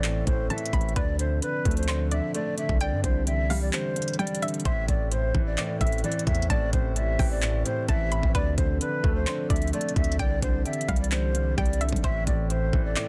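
This eerie, dark trap cut in A minor moves at 130 BPM with a half-time feel. A felt-muted upright piano gives soft, intimate accompaniment under a low-pass filter, while a deep, moody analog pad holds sustained chords with chorus in the background, cycling through Am, Dm7 and Cadd9. A mellow, airy jazz flute with a straight tone carries the melody through a low-pass filter and tape echo, and a bouncy, nasal square-wave pluck adds a second line with chorus and its own tape echo. Underneath, a punchy, heavy 808-style bass with a fast attack and decaying tail sits beside an up-front electronic kit of knocking kick, crisp hi-hats and handclaps. A break arrives from 3.7 to 4.7 seconds before the second section begins, and the dense, heavily limited master with digital ambience frames this excerpt from a longer piece.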